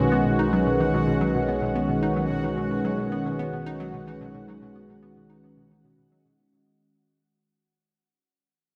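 A straight 4/4 pulse at 110 BPM carries this luminous, cosmic slice of sequencer-driven ambient space music in B major, where a bright, up-front sawtooth pad with resonant filter sweeps and chorus holds sustained chords over a fat, saturated analog bass on B1. A hollow, bouncy square-wave pluck riff with delay and a mellow soft-mallet vibraphone ringing out arpeggios sit in the background, and a bubbling stepped-filter texture joins them, shimmer reverb trailing from the pad, pluck, vibraphone and texture as the dreamy mix, soaked in lush hall reverb, fades out across its 6.8 seconds.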